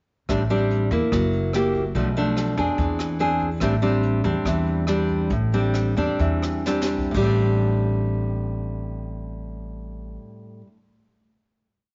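A short, intimate bossa nova piece in A minor opens with a full-bodied, fingerpicked nylon-string guitar playing thumb bass and syncopated plucked chords up front, together with a woody, growly pizzicato upright bass in a root-and-fifth two-feel and a soft brushed drum kit with dark cymbals, a high-tuned snare and a boomy kick. All three move smoothly from Am7 through F#7b9, Bm7b5 and E7b13, slowing from 3.6 seconds to a drum fill that ends the kit at 7.3 seconds, before guitar and bass ring out on a final Am7 in a small, lightly reverberant room.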